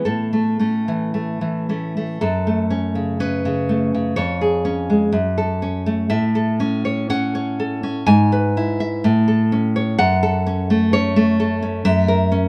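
Romantic solo classical guitar in a slow, rubato two-four, this short cut from a longer piece carries a warm, nostalgic mood: a fingerpicked nylon-string guitar sits up front in a moderate large-studio reverb, moving from a brief opening phrase into a longer passage at 2.2 seconds that ends on a seventh chord.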